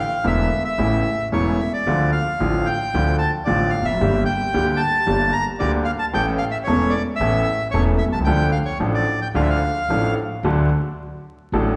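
Sultry and tense, this tango moves at 112 BPM in 4/4 with a rubato feel, set in D harmonic minor and tuned slightly high at A4 = 441 Hz. A reedy, airy bandoneon carries the melody up front in a high register, entering at the start and falling silent at 10.1 seconds. Beneath it, a clear baby grand piano plays the accompaniment with an intimate, natural tone, long sustain and audible action noise, while a pizzicato upright bass with steel strings adds a woody, growly low end. The harmony settles from a suspended A chord through D minor, G minor and A before resolving to a bright D major as a brief new section begins at 10.5 seconds, where piano and bass play on until 11.8 seconds. A wet recital hall reverb with a 1.7-second decay gives the sound the air of a church or concert hall, and vinyl crackle lends this fragment of a longer piece an aged patina.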